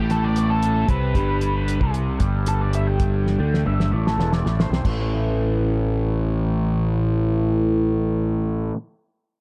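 Psychedelic rock in a lopsided 7/8, hypnotic and mysterious, cut from a longer piece and set in a small, echo-heavy room. A picked octave-fuzz lead guitar solos through the opening 4.8 seconds under a filter sweep, while a bright, double-tracked fuzz guitar riff runs over a round, overdriven fingered bass and a cloth-damped, thuddy kit with a fat snare, tight kick and dark cymbals that lands a fill from 3.3 seconds. Harmony moves from Am to Gadd9, and when the lead and drums stop near 5.0 seconds, riff and bass carry on alone on an A5 chord.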